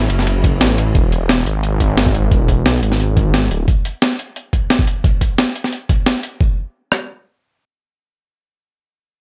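A straight breakbeat in four drives this short, dreamy cut of liquid drum and bass. The first 0.9 seconds are crowded: a muted string section, bowed con sordino with vibrato and a veiled, smooth-topped sound, holds a soft-attack rootless Dmaj9 chord in the background, while a crunchy acoustic kit of dark ride cymbal and saturated snare sits behind it, filtered and rolled off. Up front, a sampler-style breakbeat kit of pitched-up hi-hat, medium-tuned snare, thumpy kick and rim click carries the groove with a compressed, tape-toned grit. From the very start, beneath the Dmaj9 and its move to E, a menacing detuned sawtooth bass in unison, blended with sine, swells through its filter and sustains with a saturated edge until 3.7 seconds, after which the chords give way and the beat runs alone until 7.0 seconds. The room is dry, keeping every hit close and present.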